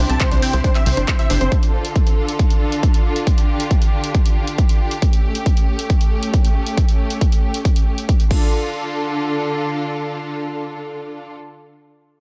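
Euphoric and driving, this uplifting trance fragment is cut from a longer piece and opens with a burst of layered synths. A punchy, detuned supersaw stab carries a brief melody over a nasal, sawtooth-edged sequencer bass and a round analog pluck that spins arpeggios in the background with chorus and digital delay. The stab, pluck and bass all pump against the beat and fall away by 1.5 seconds. Clear symphonic strings hold smooth bowed chords with light vibrato through most of the passage, moving from C to D minor and on to A7. An up-front, layered electronic kick and a dry, overdriven analog drum machine with crash cymbal, handclaps and hi-hat drive the groove until 8.4 seconds. From there the strings sustain alone in a digital ambience.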